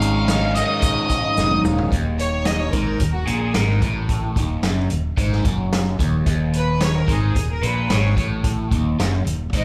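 A band playing live in one room fills a large studio with moderate reverb in this dark, trippy psychedelic rock passage cut from a longer piece, set in a straight 4/4. An up-front, double-tracked guitar drives a bright, crunchy overdriven riff through a phaser, while a fingered electric bass adds a round, dark low end and a vintage acoustic kit supplies a punchy kick, medium-tuned snare, hi-hat and toms. At the opening, an octave-fuzz lead guitar plays a short picked melody with wah and distortion over an Ab7sus4 chord, accompanied in the background by grainy, mellow maracas. A drum fill at 1.4 seconds leads into the change to E-flat minor at 1.9 seconds. From there, the distant chamber string section, bowed with light vibrato and an earthy richness, takes the solo spotlight with sustained chords over the continuing band.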